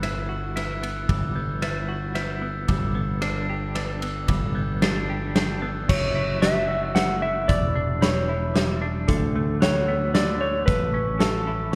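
This melancholic, brooding post-rock excerpt in 3/4 is bathed in a moderate concert-hall reverb that lends it a spacious, churchlike air. A big rock drum kit, dark and smooth with a punchy kick and a medium-tuned snare, stands up front and plays until 11.3 s. Beneath it, an overdriven picked electric bass lays down a round, direct low line. A clean, compressed semi-hollow electric guitar with tremolo plays arpeggios, and a soft, bell-like glockenspiel struck with rubber mallets adds mellow, ringing arpeggios high above. At 5.9 s a warm lap steel guitar enters with a fingered slide melody as the harmony moves from F#m7 through Em7 and D6 to A.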